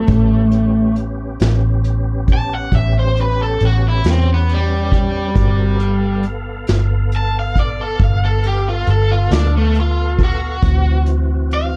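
Slow blues in 12/8 at 46 BPM in dotted quarters, with a rollicking yet laid-back mood in this short cut from a longer piece. A raw garage guitar carries the melody as an overdriven solo across the whole 11.8 seconds, its bright, picked tone sitting up front and colored by harmonic tremolo as it ranges from G3 to A5. Beneath it, a tonewheel organ holds sustained chords with clean key click, chorus vibrato and a fast rotary speaker, set lower in the mix. A vintage muted fingered electric bass gives a round, foam-muted, amped low end from G1 to E2, while a vintage brush drum kit with a punchy kick, medium-tuned snare and hi-hat brings a smooth, rolled-off top. The chords move from A9 to G9 at 5.4 seconds and D9 at 10.6 seconds, all in a dark production with little reverb.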